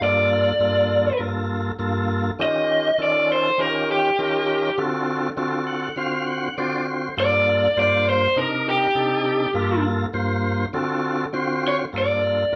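A moderate large-studio reverb surrounds this live, one-room take, a short slice from a longer smoky, brooding blues in G minor at 101 BPM, swung in 4/4. A raw, lo-fi electric guitar sits up front and carries the melody, its picked, overdriven tone running through a solo between G4 and Eb5 from the opening until 11.9 seconds. Beneath it, a full tonewheel organ supplies accompaniment, lightly driven, with audible key click and a fast rotary speaker, and it also sits close in the mix. The organ steps forward with a fill from 5.4 to 7.2 seconds. The harmony moves from Gm7 to Eb7 and D7#9, returns to Gm7, passes through Cm7 and Gm7, then turns on D7#9 to settle back on Gm7.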